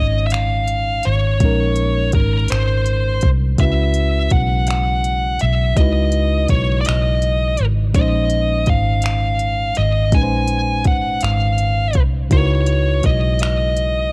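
Slow six-eight R&B in Bb minor at 55 BPM, this yearning, late-night excerpt from a longer piece sets a dark, high-gain distorted lead guitar melody up front over a reedy electric piano, a round, foam-muted fingered bass and a soft electronic kit of finger snaps, smooth hi-hat and kick, with Bbm11 and Dbm11 chords alternating in a dry, cassette-tape home recording.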